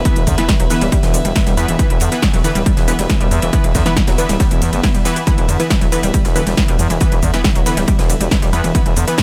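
A straight 4/4 beat drives this intense, hypnotic peak-time techno excerpt, anchored by a heavy, overdriven electronic kick drum sitting up front. A techno kit adds a punchy snare, smooth hi-hats, ride cymbal and shaker, with the hats, cymbals and percussion pumping against the kick, while a very quiet acoustic fusion kit adds airy, bright cymbals and a high-tuned snare. Underneath, a growling, thick FM bass pumps in the low register, and in the background an overdriven, detuned analog pluck riff with chorus and tape echo mingles with punchy, pumping supersaw stabs that also carry tape echo. A rich, earthy chamber string section plays bowed with light vibrato, pumping behind the groove, while a very quiet, deep and moody ambient pad evolves as a sustained drone. The mix is dry overall, with little room reverb and a loud finish.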